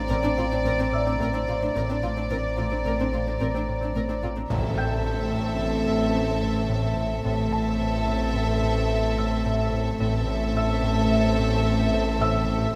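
Close, detailed and lightly reverberant, this tense, eerie suspense film cue in A phrygian moves at 109 BPM in 5/4. Soft-attack, sul tasto violin sections carry a floating melody and a second line over a dark, woody viola accompaniment, a rich cello bass and a distant, very quiet double bass, while an ethereal glass harmonica holds chords, a mellow, thumb-plucked harp rings out a low riff, a sine sub bass drones on A and a felt-muted upright piano adds an intimate texture from 0.9 seconds. Mellow French horns sustain chords until 4.2 seconds, and at 4.5 seconds the harmony turns from Bbadd9/A to A minor as a round, soft-mallet timpani stroke and a very quiet electronic impact mark the change.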